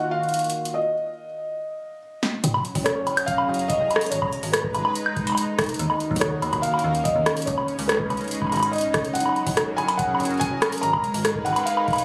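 A felt-muted upright piano opens this excerpt of eerie, melancholic IDM with a soft, intimate melody trailed by delay, resting on a detuned sawtooth pad whose smooth, bright chords carry chorus and a moving notch. The tempo is 143 BPM in a straight 4/4, and after an opening Ebmadd9 the harmony drops out for a short break capped by a drum fill. An electro analog drum machine sits up front throughout, with a punchy snare, metallic hats, rim clicks, toms and woodblock, all with a tape-warm edge. At 2.4 s a digital FM bass with a fast attack and mellow, decaying notes joins, and a deep analog kick follows at 2.8 s as the chords move through Gb69, Abmadd9, Ebm9 and Dbsus2. The whole excerpt is heard as if captured on a phone in the room, with club reverb and a moderate digital room reverb around it.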